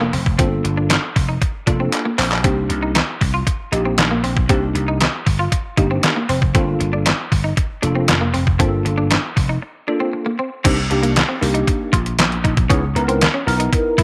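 Early-eighties boogie funk at 117 BPM in C dorian, danceable and funky, with a growly, punchy slap bass under a worn, slightly out-of-tune tine electric piano with ensemble chorus, a bright picked clean guitar riff with subtle chorus, and an up-front, overdriven 8-bit drum machine of thumpy kick, handclaps, hi-hat, snare and crash, all in a moderate spring reverb, moving from Gm9 to Cm9 with a drum fill near 1.9 seconds and a break at 9.6 seconds before shifting to Dbm9 at 12.7 seconds in this cut from a longer piece.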